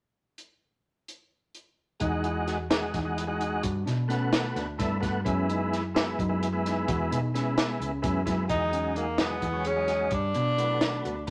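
Heard in a moderate studio reverb, this driving, intricate progressive instrumental in 7/8 at 259 BPM (eighths) opens with a compact cocktail drum kit alone, its high-tuned snare and punchy kick up front. At 2.0 s a round, hollow-body picked electric bass, a smooth tonewheel organ with chorus vibrato and key click, and a worn, slightly out-of-tune tine electric piano playing lightly overdriven arpeggios in the background join over Emaj7, Gmaj7 and F#7sus4, before a clear tenor saxophone takes up the solo melody with vibrato at 8.5 s in this cut from a longer piece.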